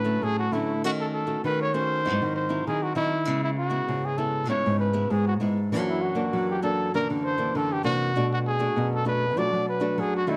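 A moderate studio ambience surrounds this joyful, playful samba and choro excerpt at 98 BPM in straight 4/4, tuned slightly low to A4 = 437 Hz. Up front, a mellow, breathy trumpet with vibrato and a soft, whispered attack carries the jazz-style solo melody through plate reverb, sounding intimate against a small, up-front nylon-string guitar whose thumb-plucked chords carry audible finger squeak. A second fingerpicked nylon-string guitar, acoustic and small, holds the bass line as the harmony moves from Dmaj7 through D#m7b5, G#7b13 and C#m7 to F#aug7 and Bm7.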